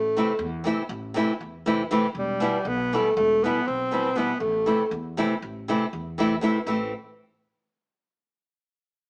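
A mellow, punchy alto saxophone sings an up-front classical-style solo with vibrato until 4.9 seconds over a bright, fingerpicked nylon-string guitar and a woody pizzicato upright bass, in a restless, bittersweet Balkan wedding-band excerpt in 9/8 at 239 BPM in A minor, moving from Am to Em and back with a live, small-speaker room sound and moderate studio reverb.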